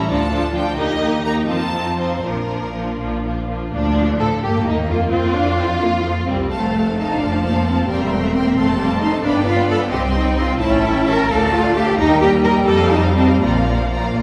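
The cello section leads the ear with warm, expressive bowing, its vibrato and portamento sitting close in this cheerful, graceful classical-period movement for string orchestra in Bb major, moving in a rubato 6/8 at 78-89 BPM. Above it, a clear, distant first violin section carries the melody while a second violin section hovers in the background and the violas fill in rich, focused accompaniment, all bowed with vibrato. A lush double bass section sits up front beneath everything, and the whole ensemble is heard from further back in a wet scoring-stage reverb as the passage moves into its second section at 3.7 s and arrives home on Bb at 13.4 s.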